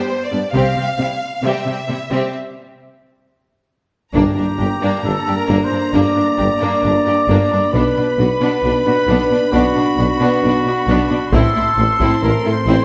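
Epic, dark orchestral film score cut from a longer piece, where lush bowed strings with vibrato open, the rich violins carrying the melody over a clear, distant second line and a close viola section, with deep cellos and double basses joining moments later, until a break at 2.3 seconds gives way at 4.1 seconds to dark, soft-attack French horns, mellow, up-front trumpet stabs, a punchy tuba, brief bursts of hard-stick taiko and very quiet, round timpani, all set in a wet scoring-stage reverb.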